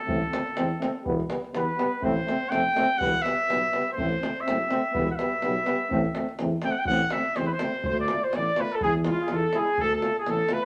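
Virtuosic and restless, this Balkan brass band excerpt in A minor moves at 124 BPM in a swung 2/4, opening with a clear, smooth-topped trumpet solo up front over distant, roomy trombone and euphonium with light vibrato, a mellow tuba bass and a tight, saturated davul, all in a wet studio reverb, until a close-miked flugelhorn takes the melody at 7.9 seconds as the harmony shifts from Am and Em to Dm and E.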